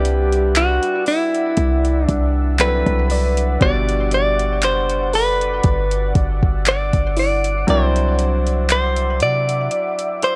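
Contemporary R&B at a slow 59 BPM in 4/4, with a light 16th-note swing and a romantic, smooth mood, this short cut from a longer piece moves through Cmaj9#11, Gmaj7 and Cadd9. A clean, direct-recorded electric guitar carries the melody up front, its picked, compressed tone trailed by tape echo, while a clear concert grand piano with natural depth supplies the accompaniment beneath it. A deep, moody pad holds sustained chords in a high register, its detuned sawtooth layers softened by chorus and built-in reverb. A boomy 808-style bass with a sine body and noise layer sits prominently in the low end, and a produced electronic drum kit adds a soft kick, metallic hi-hats and handclaps. A soft, round pluck drifts in the background from 3.1 to 8.1 seconds with chorus and tape echo, and the bass drops out at 9.7 seconds for a brief break. The dry, gritty hardware recording has a cassette-tape character with little reverb in the room.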